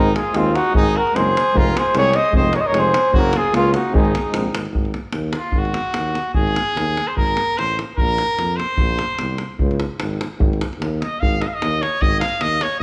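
This exuberant Balkan brass band excerpt opens at 149 BPM in a straight 2/4 in Ab mixolydian. A dark cornet carries the melody up front with light vibrato and slapback echo, a bright trumpet plays a second line, and a very quiet French horn and a background euphonium fill in the accompaniment over a mellow tuba bass and a deep, up-front davul. The cornet, horn and euphonium stop at 4.5 seconds, and from 4.7 seconds the trumpet takes a virtuosic solo to the end over the tuba and davul, with the classical-style brass sitting distant in a moderate recital-hall reverb.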